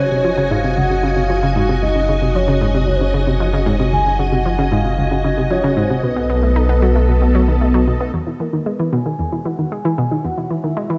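From the first moment, a round, nasal analog pluck riff sits up front with chorus and analog delay, while a filter sweep moves over a synth arpeggio sound through 8.1 seconds, a lush string machine holds slow-blooming chords, and a deep sine sub bass anchors the low end. This is ambient, sequencer-driven space music at 114 BPM in a straight 4/4, luminous and expansive in mood, and it is cut from a longer piece. Above the bed, a soft octave-layered synth lead carries the melody with a dark, full tone, shaped by chorus, tremolo, vibrato and analog delay. The harmony moves from Db/Gb to Cb7, then shifts to Eadd9 as a new section arrives at 8.1 seconds, where the sub bass drops away. At 8.5 seconds a very quiet, bubbling, resonant texture of random filter steps slips in near the top. A moderate plate reverb and a dark, warm production give the whole a soft, spacious glow.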